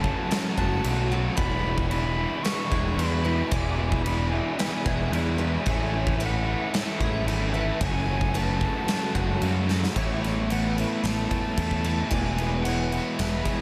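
A straight 4/4 pulse at 112 BPM carries this blissful, hazy fragment of shoegaze and dream pop in E mixolydian, cut from a longer piece. A huge arena drum kit drives it with a punchy kick, a medium-tuned snare and bright crash cymbals in a pumping hall, adding a fill at 9.7 seconds before the harmony moves from F#m7, E7 and Amaj7 to Aadd9 and E. Up front, a growling picked electric bass with overdrive anchors the low end. Behind it, a dark, hollow-bodied semi-hollow guitar with subtle chorus, a double-tracked overdriven electric guitar and a very quiet, slightly broken-up guitar through a small old amp play riffs, while a boxy, shimmering twelve-string acoustic in octaves picks arpeggios through ensemble chorus and delay. Over this layered wall, a reedy, airy concert flute sings the tongued, straight-toned melody with delay. A moderate, huge ambient reverb with a 3.8-second tail soaks the whole mix in a dreamy wash.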